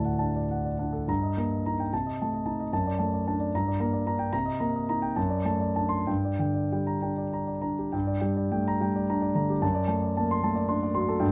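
Swaying in 6/8 with a pulse of 62 to 76 beats per minute on the dotted quarter, the music breathes with free rubato, pressing forward and holding back as a romantic character piece for solo piano. Its mood is stormy and passionate, set in G minor, and this short excerpt is cut from a longer work. The concert grand plays alone from 0.0 to 11.3 seconds, reaching from D2 in the deep bass up to C6, and it sits up front with an intimate, vintage quality, smooth in tone, with the mechanical action audibly present. The harmony starts on D and moves through Eb/G, a diminished chord over C, and D/F# before settling on G minor at 3.5 seconds, then passes through Cm7 and D7/F# back to G minor. The opening phrase returns at 7.9 seconds and leans again on D7/F# at 9.6 seconds, all heard through a light reverb with the highest treble gently rounded off.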